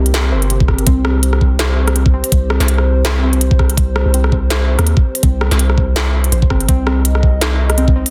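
A deep, mellow 808-style bass holds long sustained notes up front under a knocking, tape-warm electronic kick entering at 0.6 s in this tense, spacious half-time drum and bass excerpt at 165 BPM in C minor, where an industrial kit with a clanging snare, rim click and crisp hats re-recorded in a large room swings gently over a dark, detuned, wave-folded analog pad pumping with sidechain and chorus, while a warbling, lo-fi pluck arpeggiates in the background through tape echo, all sitting in light digital ambience with a dense, heavily limited modern master.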